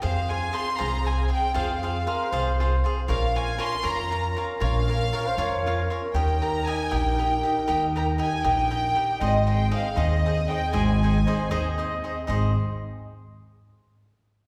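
Proud and festive, this mariachi-flavored Mexican folk excerpt moves at 78 BPM in a straight 6/8 in Ab major, its chords passing from Fm through Bbm and Eb to Ab. A violin section carries the melody up front with light vibrato and a soft sul tasto bow, over crisp picked cavaquinho, an airy flute section holding sustained chords, and a woody, thumpy pizzicato upright bass. A dark, smooth-topped solo trumpet adds a classical-style second line with tape echo from 2.1 to 6.0 seconds and again from 11.3 seconds, all set back in a wet concert-hall reverb.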